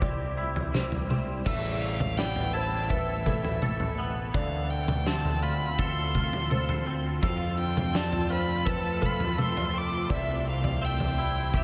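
A rich, bowed violin carries the melody up front from 1.5 s, its focused tone shaded by vibrato and a smooth top, trailing a diffuse ambient delay. This brooding, cathartic post-rock passage, cut from a longer piece, sits in A minor at 83 BPM in a straight 4/4, with chords moving from C through Asus2, Dm7 and F before returning to C. Beneath the melody, a twangy, clean electric guitar picks compressed arpeggios through ensemble chorus and delay, while a felt-muted upright piano plays soft, intimate arpeggios in the background, its action noise audible, until it stops at 10.8 s. A growling picked bass, overdriven yet round, anchors the low end, and a loose indie drum kit with a fat snare, tight kick and dark cymbals sits in a pumping studio room. A cloudy granular pad holds evolving, blurred chords with a slow attack behind the band, and the dreamy mix is soaked in a huge ambient reverb.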